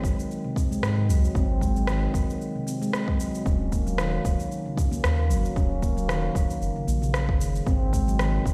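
A swung 114 BPM groove in 4/4 drives this short cut from an earthy organic downtempo piece in Eb dorian: an overdriven, deep electronic kick and tape-warm electronic cabasa and rim click sit over a round sine sub bass with sidechain pumping, while a ringing, meditative stainless-steel handpan, touched with soft fingertips and treated with tape echo, carries up-front arpeggios from 0.4 seconds over Ab and Ebm7 chords, the mix carrying light digital ambience and the stone reverb of a bare room played on a big sound system.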